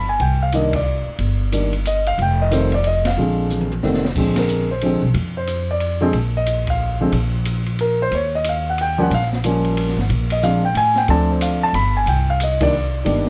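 A dark, mellow concert grand piano carries the melody from the very start, joined at once by a woody, thumpy upright bass played pizzicato on gut strings, both sitting up front in this swinging jazz piano trio excerpt. The tune moves briskly at 182 BPM in 3/4, with a 63% swing on the eighth notes and a Bb mixolydian color. The acoustic drum kit enters at 0.2 seconds in a natural studio room, with dark cymbals, a medium-tuned snare and a boomy kick rounding out the trio beneath the others. The band hits accents together through the passage, and a drum fill leads into the second pass of the theme at 4.2 seconds. The chords wander through Cm, F7sus2, Bb9, Eb9 and Dm7 before landing on Cm7, while plate reverb on the piano and a light overall reverb give the whole a warm sound.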